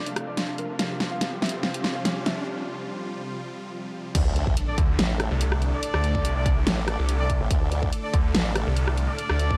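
Heavy half-time wobble dubstep, chaotic and aggressive, opening with a dark, worn grand piano melody over filtered supersaw chords, a background ethereal pad, a very quiet riser and a dubstep kit with a huge snare, then dropping at 4.2 seconds into a punchy kick, a formant-sweep wobble bass, a snarling distorted saw bass up front and bright brass stabs with dub echo.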